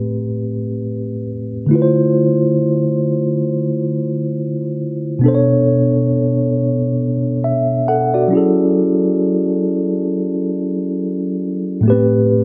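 A slow 4/4 pulse at 68 BPM carries a gentle 58% swing on the sixteenths, giving this late-night R&B fragment, cut from a longer piece, an unhurried, longing sway. A lone tine electric piano plays throughout, ranging from A2 up to F#5, its mellow, clean tone heard up front as if through the instrument's built-in speakers. The harmony sits in B minor with tuning at A4 = 443 Hz, opening on Am9 and moving to Dm9 before a second passage arrives at 5.2 seconds with Bm9 and then F#m9, returning to Am9 near the close. Light reverb with a digital ambience gives the recording a soft sense of space around the keys.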